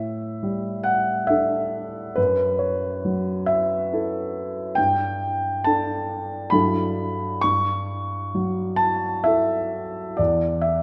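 A clear concert grand piano opens alone on a suspended A7sus4 chord, then drifts through F#m7, Gsus2 and a pair of lush Em11/G and Em69/G colours in a serene, luminous impressionist passage in 3/4, its uneven beats stretched with rubato. The piano sits up front with an open, deep bass and a range from E2 to C#6, tuned slightly high to A4 = 441 Hz. A moderate concert hall reverb surrounds the piano until the sound stops at 10.8 seconds, marking this as a fragment cut from a longer piece.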